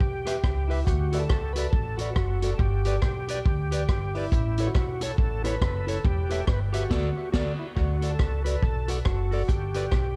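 Bouncy and cheerful, this swung ska excerpt puts a gritty, overdriven tonewheel organ with key click, chorus vibrato, a stopped rotary speaker and tape echo on the melody over woody pizzicato upright bass and a vintage drum kit with a punchy kick, rim clicks and dark cymbals, while a clean, fingered electric guitar with its own tape echo adds mellow accompaniment from 0.3 seconds, and the whole band hits an accent between 6.9 and 7.8 seconds within a dark, reverberant studio sound.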